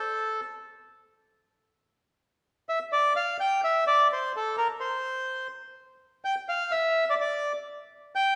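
Nostalgic and passionate, this short tango fragment, cut from a longer piece, features a solo bandoneon across its full 8.4 seconds. The tempo sits around 127 BPM in 4/4, yet the feel is rubato, giving the line a free, breathing quality. The bandoneon sounds reedy, bright and airy, placed up front, and its melody ranges from A4 to G5. Tuning rests slightly below standard pitch, at A4 = 439 Hz. A recital hall's reverb, with a decay of 1.7 seconds, surrounds the instrument and lends the performance the resonant spaciousness of a church or concert hall.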